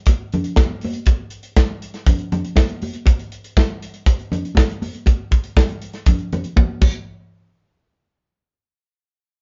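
Disco drums and congas in a celebratory, glamorous mood, with a tight kick, medium-tuned snare, hi-hat, crash and toms sitting up front in a small-room acoustic sound, ringing high-tuned congas played with soft hands sitting lower, close and dry, beneath them, and a drum fill at 6.6 seconds leading into a new section, all captured as a band playing live in one room with light reverb and a dull top end, cut from a longer piece.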